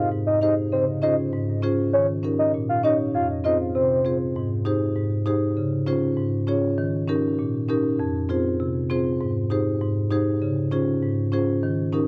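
A dark, round, octave-layered synth lead with chorus, tremolo and analog delay carries the melody up front for the first 4.2 seconds of this bouncy, tough dancehall excerpt at 99 BPM, while a marimba played with medium mallets holds the accompaniment through to 12.1 seconds over a recurring Abmaj7, Dbmaj7, Eb7 and Fm progression, captured in a dry, gritty hardware recording with light reverb.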